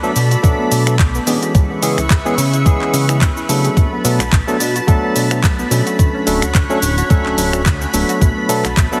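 A thumpy, sampler-style electronic kick sits up front in this groovy, sensual nu-disco excerpt, entering at 0.4 seconds with a small-room ambience and a gently swung 4/4 pulse. A bell-like, barky tine electric piano carries the accompaniment, lightly overdriven through a combo amp with analog delay and sidechain pumping, while a lush, warbling unison pad holds thick, detuned chords above it. Underneath, a glossy, chorused synth bass with a pulse-wave and sawtooth character arrives at 0.2 seconds, and a soft, round pluck plays dark arpeggios in the background through chorus and tape echo. A layered house drum kit adds finger snaps, handclaps, shaker and tape-warm hi-hats. The harmony moves between Bm7, C#m7 and Dmaj7, and the whole mix has a heavily compressed, radio-like sound with light digital reverb.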